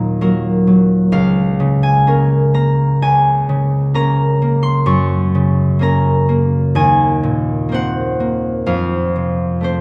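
A classical solo harp piece, wistful and mysterious, unfolds with a slow, rubato feel in 4/4 across this 9.8-second passage cut from a longer piece. The concert harp sits up front, bright and ringing as it is fingerpicked over a range from Db2 to Db6, moving through Ebm, Gb and Cm7b5/Eb before landing on F at 8.7 seconds. A moderate recital hall reverb surrounds the instrument, and lossy compression artefacts colour the sound.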